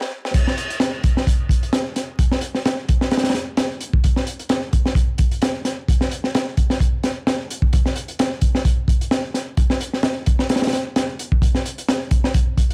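A quick drum fill and stop open this funky, swaggering breakbeat excerpt before the groove drops in at 0.3 seconds, running at 130 BPM in 4/4 with a light 16th-note swing. The single acoustic kit sits up front and sounds crunchy and gritty, pairing a punchy kick and high-tuned snare with dark hi-hat and crash cymbals under a rolled-off top. The dry, small-room recording carries vinyl crackle and a high-pass filter, giving it a saturated, warm character.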